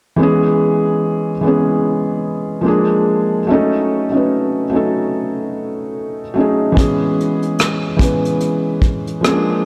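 This lo-fi hip hop excerpt, cut from a longer piece, drifts at 73 BPM in C# minor with a swung sixteenth-note feel and a reflective, hazy mood. A felt-muted upright piano carries the accompaniment from 0.2 seconds, its mellow, dark tone sitting up front and close, with the soft noise of its action clearly audible beneath a low-pass filter. The harmony moves through C#m7, A#7 and D#m7b5 before settling back on C#m7. At 6.8 seconds a vintage brush drum kit joins with hi-hat, a tight kick and rim clicks, its rolled-off top and small-room character adding a dusty intimacy. A long plate reverb soaks the whole mix in a dreamy wash, blurring the edges of the short passage.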